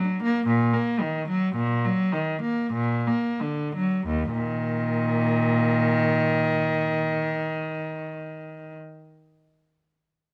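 A lone bowed cello, reedy and gut-strung in period style and placed up front, carries this grave, introspective classical movement in the manner of a baroque suite, moving in a rubato 3/4 at 43-59 BPM in Eb minor, tuned to A4 = 445 Hz, slowing down through its first 4.1 seconds as the harmony passes from Bbsus4 to Bb before arriving on Eb5, its line staying between Eb2 and Bb3, heard through close, detailed microphones with light reverb in a brief fragment cut from a longer piece.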